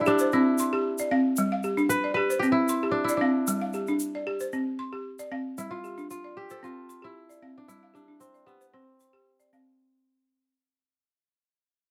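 A straight 4/4 pulse at 114 BPM carries this joyful, flowing West African string and xylophone excerpt, where a woody, buzzing balafon struck with hard rubber mallets spins arpeggios from G3 to C6 up front, a crisp, ringing fingerpicked kora sings the melody between B3 and B4, and a grainy, bright egg shaker sits close behind them, all over a C and G chord sway, with light reverb and detailed close miking, as the whole piece fades out from the start until 9.8 seconds.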